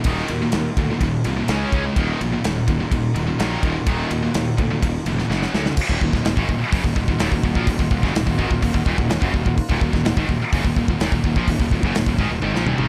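The drum kit stands out most, an acoustic kit up front with a tight kick, a medium-tuned snare and a small-room sound, driving this aggressive, relentless heavy metal excerpt at 126 BPM in a straight 4/4 in Eb minor. Two bright, distorted high-gain electric guitars play picked riffs throughout, one with a heavier tone and the other scooped. A fuzz-toned fingered electric bass enters at 0.1 seconds with an overdriven, growly edge, reaching down to Eb1. Far beneath them, a very quiet bowed string section holds dark, floating sustained chords with a soft attack and smooth top. The harmony moves from Eb minor through Db and Gb power chords. A drum fill at 5.3 seconds leads into the second section, and another at 12.4 seconds closes the clip. The production is dark and warm, with little reverb, and the clip is cut from a longer piece.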